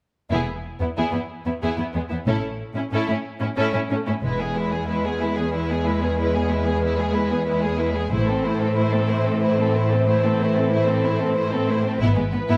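Adventurous and soaring, this heroic film-score passage, cut from a longer piece, moves in a straight 12/8 feel of dotted-quarter pulses. Two bowed violin sections carry the melody and a second line with focused, lush vibrato and a smooth top, while the violas fill in accompaniment from the background with an even, rich tone. Up front, the cellos anchor the bass, and the double basses add a soft-attacked, close foundation that drops out after 4.5 seconds and returns only in brief touches later. At 4.2 seconds a French horn section enters in the background with sustained chords and light vibrato, launching a build-up that runs to the end as the harmony shifts from E and A to A minor before settling on E over G#. A moderate scoring-stage reverb gives the ensemble a spacious, cinematic sheen.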